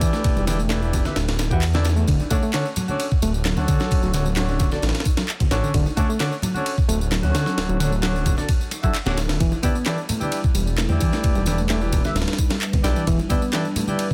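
A gritty, sampler-style breakbeat kit sits up front, its compressed, pitched-up sound built on a thumpy kick, a high-tuned snare and ride cymbal with a tape-warm character. Beside it, a thick, menacing detuned saw bass holds the low end with a fast attack and a beating, sustained tone, while layered electronic tambourine and handclaps fill out the groove and hard-hand bongos and congas sit in the background. A reedy, clean electric piano plays the riff through its built-in speakers, and a mellow jazz-style horn section adds smooth, octave-doubled stabs with vibrato, both trailing dub echo. The harmony moves from Em7 to a long stretch of Dmaj7 before returning to Em7, and at 10.1 seconds a dark, moody analog pad slips in behind the band with chorus, a slow attack and sidechain pumping. The swaggering, straight breakbeat feel comes across in a dry, dense and heavily limited modern mix, cut from a longer piece.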